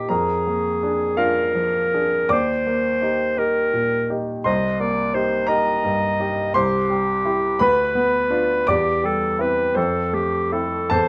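Classical romantic duo for clarinet and grand piano, solemn and melancholic in mood, moving at a slow 51-58 BPM in 6/8 with a flexible, rubato feel. The clarinet carries the melody from start to finish, its tone bright with a smooth top, sitting up front in a solo classical voice. Underneath, the grand piano supplies the accompaniment across its full span from low bass to high treble, its sound clear and present, also placed close to the listener. The harmony drifts through Bb7/F, Eb and Cm7 before settling into C major at 6.6 s, then passes through Bdim/D and C/E to rest on Fmaj7 at 9.8 s. A moderate studio reverb lends a modest sense of room around both instruments in this short passage cut from a longer piece.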